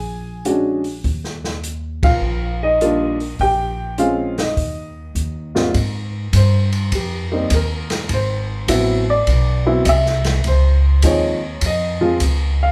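This jazz piano trio excerpt swings at a relaxed, warm 102 BPM in 4/4, with an up-front upright piano of short sustain carrying the melody over a thumpy pizzicato upright bass. The open acoustic kit joins at 0.5 s with airy dark cymbals, hi-hat, a medium-tuned snare and a boomy kick, and the band hits an accent together at 1.9 s. At 5.7 s the key shifts from Eb major to Ab major as the piano takes a solo over an Ab7alt and then a Dbmaj7, all heard as a live band in one room with moderate large studio reverb.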